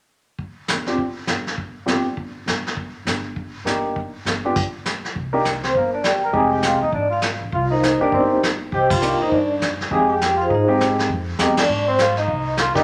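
A moderate large-studio reverb gives this moody, swinging small-group jazz clip a roomy sheen, with the brush kit and grand piano sitting up front. At a brisk 202 BPM in 4/4 and C minor, the vintage brush kit sets the swing with a punchy kick, dark cymbals and a rolled-off top, while the upright bass follows just after with a woody, growly pizzicato tone. The warm concert grand piano comps in its middle register with audible action noise and deep bass. The opening bars pass over chordless stretches and a brief G minor chord before the harmony moves through C7, Fm7 and Cm7. At 5.6 seconds a mellow, distant trumpet enters as a second line with light vibrato and scooped notes, and at 5.7 seconds the vibraphone takes the melody with a metallic, ringing sound and fast motor vibrato. The band hits an accent at 8.9 seconds and another near the end of this cut from a longer piece.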